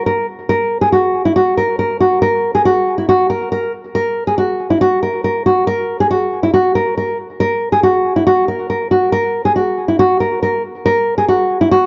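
A half-time 4/4 pulse at 139 BPM frames this ominous, menacing hip hop fragment, where a lone dark, classical-style nylon-string guitar sits up front, fingerpicked between Fb4 and Bb4 with audible finger squeak and a tape echo trailing its notes, shifting into a new section at 2.2 seconds inside a small, dry room on a gritty hardware recording whose top end is dulled.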